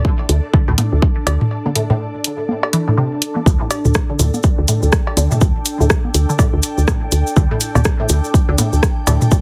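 A heavily compressed, radio-like sound with light reverb frames this clinical, quirky minimal techno excerpt, where a punchy up-front kick and a round, woody FM bass pump beneath an ethereal, airy pad that fades in with chorus and phaser, while house hi-hats and rim clicks, squelchy resonant blip plucks with tape echo, and tape-warm electronic congas, cowbell and toms through digital delay carry the swung groove past a break from 1.5 to 3.5 seconds, at which point a grainy acoustic cabasa joins.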